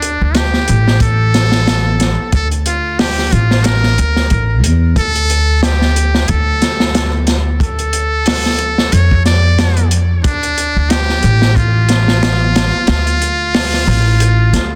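Trip hop at 91 BPM in D minor, this cinematic, smoky excerpt rides a lightly swung 4/4 groove from a longer piece. A crunchy breakbeat kit of hi-hat, kick and snare sits up front with a saturated, gritty character, a tight kick, a medium-tuned snare and a rolled-off top. Beneath it, a pizzicato upright bass on gut strings provides a woody, thumpy low end, dark and prominent in the mix. Over this, a metal-muted trumpet plays a solo jazz-style melody between D4 and D5, its buzzy, thin tone shaded with light vibrato, a soft attack and tape echo. The harmony moves from a rootless Bbmaj7 to Dm at 5.0 seconds and F6/A at 10.2 seconds, and the kick drops out at 14.2 seconds just before the end. A small room ambience surrounds the parts, and the master is dense and heavily limited.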